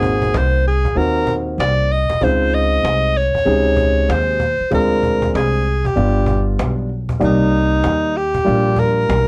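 Cool and smoky, this 9.3-second excerpt of swung jazz-hop moves at 96 BPM in C minor. A bright, soft-attacked alto saxophone sings the solo melody up front, over a dark, mellow grand piano, a thumpy pizzicato upright bass with transformer saturation, and a woody, compressed cajon with faint snares. The chords move from Ab7 to Dbmaj7, then through Dm7b5 and G7 to rest on Cm9, all under light reverb and the warbly pitch drift of worn cassette tape.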